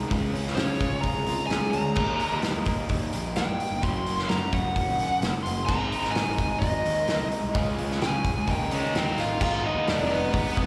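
A straight 4/4 pulse at 129 BPM drives this anthemic, cathartic quiet-loud alternative rock excerpt, cut from a longer piece, with a loose indie drum kit up front, its punchy kick, medium-tuned snare, dark cymbals and hi-hat sitting in a pumping room. A fuzz-laden, growly picked bass and a bright, double-tracked overdriven electric guitar riff fill out the sound, while a full-bodied jumbo steel-string acoustic plays background arpeggios with finger squeak and slapback echo until 2.0 seconds. From 0.5 seconds a dark, smooth overdriven lead guitar carries a soloing melody through slapback echo and analog delay over chords moving from Db through Gb and Ab to Eb7, landing on Abm at 9.4 seconds, all heard as a live gig through the venue's PA with recital hall reverb.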